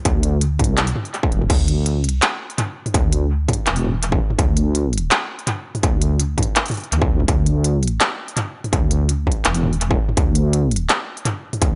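From the first moment, a deep, wobbling sawtooth-and-sine bass with chorus drives this dark, tense half-time drum and bass at 166 BPM with a light swing, under a distorted, tape-warm electronic kick and an up-front industrial kit of crisp hi-hats, handclaps, toms and crash cymbal thrown into analog delay, all in an echo-heavy mix with light reverb and rolled-off highs across this short 11.8-second excerpt.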